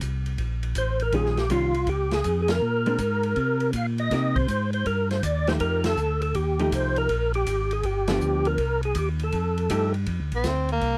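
A percussive tonewheel organ carries the melody in this swinging, bluesy soul jazz organ trio excerpt. Its fat, lightly overdriven tone is sharpened by third-harmonic percussion and key click, with chorus vibrato and a slow rotary speaker. Beneath it, a second, mellow tonewheel organ supplies a round bass line with the same overdrive, vibrato and slow rotary treatment, and both organs sit up front. An electric hollow-body jazz guitar adds clean, compressed, picked accompaniment, while an acoustic drum kit with dark cymbals, a medium-tuned snare and a boomy kick swings at 161 BPM in a small, airy room. The band hits shared accents over changes that move from Eb9 through Cm7 and F9 before arriving on Bbadd9, and at 10.4 seconds a bright, raspy, growling tenor saxophone breaks in with a gritty, vibrato-laden solo entry. The dry, close 1970s-style studio sound keeps the group intimate and polished.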